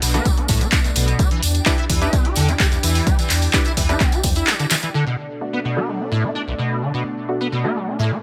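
Gritty and trippy, this acid house excerpt moves at 128 BPM in B minor, with a squelchy, resonant acid bass riff running up front over a lush, detuned sawtooth pad, both pumping against the sidechain as the chords shift from Bm7 to Em7. A punchy, tape-warm electronic kick, an overdriven analog drum machine with handclaps and hi-hat, a jingly tambourine and a round sine sub bass drive the opening, until a drum fill and band accent at 4.7 seconds clear the floor. Muted, chorused dub chord stabs enter just after the start, and from 4.9 seconds they carry a filter sweep as the harmony returns to Bm7 alongside the pad and acid bass, all set in light reverb.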